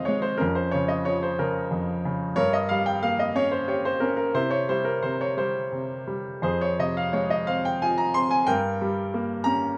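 A bright, up-front baby grand piano plays alone through this wistful, melancholic classical fragment in 6/8 with free rubato, moving from Bbm/F through Gdim and C to Fm between F2 and C6, all set in a wet studio reverb within a rough home-demo mix.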